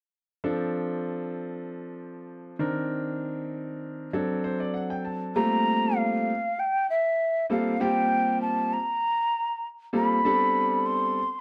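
Jazz at 98 BPM with an intense, slick mood, this short cut from a longer piece opens on a clear, intimate concert grand piano with deep bass, audible action noise and long sustain playing accompaniment; the piano adds a fill from 4.1 s, and at 5.4 s a mellow, airy metal flute with crisp chiff and vibrato enters up front to carry the melody in G dorian, all set in a moderate club reverb.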